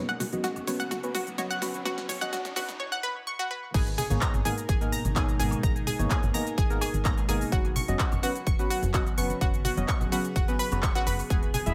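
A straight 4/4 feel carries this emotional, expansive progressive house excerpt, cut from a longer piece, with sidechain pumping on most parts. The opening build-up places a drum fill from the big-room dance drum kit, with its crisp hats, punchy snare, handclaps, shaker and crash cymbal, under filter sweeps on the synths, while background woodblock and congas played with soft hands enter alongside and a riser sits in the background until 2.8 seconds. At 3.7 seconds the drop lands with an overdriven, punchy electronic kick placed up front. A tight, dark sequencer bass of detuned sawtooth, square and triangle waves drives low, beneath a round, bright analog pluck arpeggio treated with chorus and dub echo. Deep, mellow chord stabs with ring modulation and a moving notch add their own chorus and dub echo, and an evolving wavetable pad morphs through sustained chords with phaser and built-in reverb, all within a light digital ambience.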